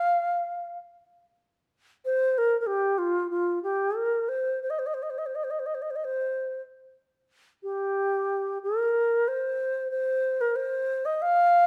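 A solo bamboo xiao, end-blown and up front, carries this tender, graceful fragment of Chinese traditional music, its pure yet reedy tone sitting in a low register with vibrato and tongued notes. The rubato phrasing moves freely over just under 12 seconds, shifting to a new section at 7.3 seconds. A moderate recital-hall reverb lends the bright line an airy sense of space.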